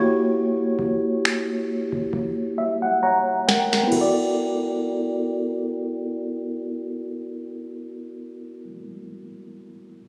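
Contemporary R&B with a romantic, dreamy swing, built on a worn, slightly out-of-tune tine electric piano heard up front through a low-pass filter, while a booming analog drum machine with a deep kick, crisp snare, finger snaps and crash cymbal enters at 0.8 seconds, plays a fill alongside a piano fill from 2.1 seconds and stops at 4.1 seconds as the harmony moves from F#7b9 to D69, the whole captured in light reverb with the compressed sound of a phone recording in the room.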